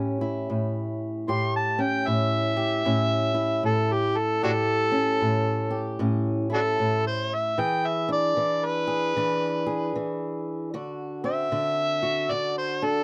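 A gritty, amplified harmonica enters at 1.3 seconds with a jazz-style solo full of tongue slaps, scooped notes and light vibrato, riding up front over a dark, woody, boxy fingerpicked ladder-braced acoustic guitar on old strings in this laid-back, soulful 76 BPM swung blues in A mixolydian, moving from A7 to E7 and D7 under light reverb and close, detailed microphones in a short cut from a longer piece.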